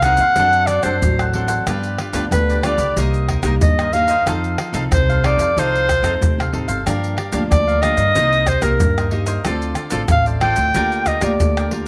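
A breathy, up-front clarinet carries a jazz-style solo melody with light vibrato over a sunny, festive samba-and-choro groove at 92 BPM, backed by crisp picked cavaquinho, full-bodied fingerpicked nylon-string guitar, woody, thumpy pizzicato upright bass and close, dry tube shaker, pandeiro, tamborim and tight surdo played with soft hands, all set in small-room ambience with moderate spring reverb through chords moving from D7/F# to Gm7/D in this short excerpt cut from a longer piece.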